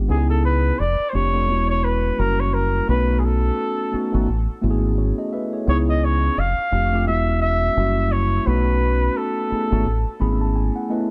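Sultry and introspective, this neo-soul R&B excerpt at 86 BPM with a swung 16th-note feel pairs a mellow tine electric piano, lightly touched with chorus, and a deep, round fingered dub bass, while a distant, roomy flugelhorn carries the jazz-style melody with vibrato and a soft attack over chords such as C#m9, F#7b9 and Amaj7, all in light reverb, ending on an electric piano fill at 9.8 seconds.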